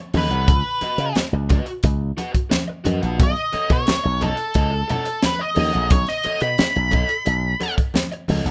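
A straight 4/4 funk groove runs through this short, playful clip cut from a longer piece, driven by a crisp fusion drum kit with a punchy kick, a high-tuned snare and hi-hat, all sitting up front in an airy, polished studio room. Low-tuned congas played with hard hands add a ringing, close acoustic layer of percussion. A growly slap bass, bright and direct through its envelope filter, carries the low end, while a raw garage guitar with a warm, overdriven picked tone fills in the accompaniment further back in the mix. Over the top, a dark octave-fuzz lead guitar, picked and distorted, states the melody from 0.2 s until it drops out at 7.7 s. The harmony moves from C#9sus4 to B9, and light reverb glues the parts together in a rough home demo mix.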